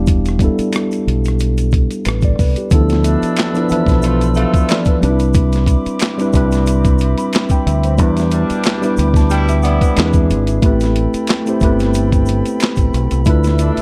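Introspective and sultry, this R&B and neo-soul excerpt moves at 91 BPM in 4/4 with a light sixteenth-note swing, set in D dorian over chords such as Em7, Dm69, Cmaj9 and Am9. A worn, slightly out-of-tune tine electric piano carries the accompaniment up front from the start, joined by a deep, round, punchy fingered electric bass and a gritty, compressed, pitched-down sampler-style drum kit with a thumpy kick, high-tuned snare, handclaps, hi-hat and rim click. A tube shaker and finger snaps with group handclaps sit saturated in the background. At 2.7 seconds an airy flute section enters with tongued, vibrato-laden sustained chords, and from 3.0 seconds a distant, roomy horn section adds pop-style stabs treated with slapback echo. The whole takes place in a small room ambience with a dark, warm production.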